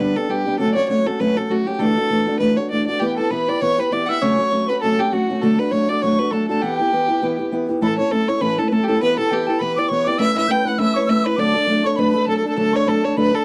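Driving and wild, this Celtic folk reel runs at 201 BPM in 4/4 with a swung feel, its bowed fiddle carrying the melody up front with a smooth, even tone and light vibrato. A fingerpicked acoustic archtop guitar sits just as close, boxy and warm with fresh strings and audible finger squeak, while a pure, chiffy tin whistle enters at 3.0 s with a tongued, vibrato-laced second line. The dry, close 1970s-style studio sound carries a touch of light reverb, and this cut from a longer piece moves through chords such as G, F#m, Em and D before shifting into a new strain around 7.8 s.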